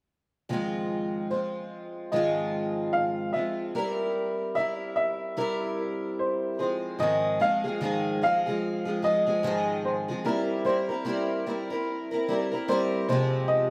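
Pop in Ab major at an easy-going, heartfelt 74 BPM with a 16th-note swing: a double-tracked, up-front parlour steel-string acoustic guitar with fresh strings enters at 0.5 seconds, picking an accompaniment, and a woody, boxy upright piano joins at 1.3 seconds to carry the melody, with the harmony moving among Ab6 and C7/G before a shift into a second section at 7.0 seconds that closes on Fmadd9, all bathed in a lush, wet hall reverb and a rough home-demo mix in this short excerpt from a longer piece.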